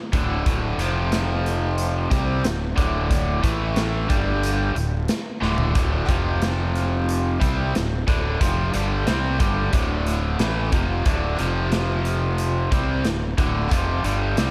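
A straight 4/4 pulse at 90 BPM drives this sunny classic rock excerpt, with a big acoustic rock kit of punchy kick, medium-tuned snare, hi-hat and toms playing throughout and a drum fill at 5.4 seconds. Up front, a bright, double-tracked overdriven electric guitar picks a riff over power chords on D5, F5, A5 and G5, while a fuzz-laden fingered electric bass, amped and overdriven, adds a thick low end. Light reverb and a small-room ambience surround the whole mix.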